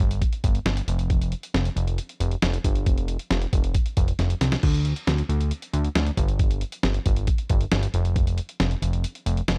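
A fat, detuned sawtooth analog bass sits up front in this melancholic, cool synth-pop excerpt, each fast-attack note plucked by its filter and decaying under a moving notch. Beside it, a compressed, muffled lo-fi sampler-style drum kit with a thumpy kick, fat snare, hi-hat and crash cymbal sounds tape-warm, with a short fill at 4.2 seconds. The straight 4/4 groove is dry and gritty, and the excerpt is cut from a longer piece.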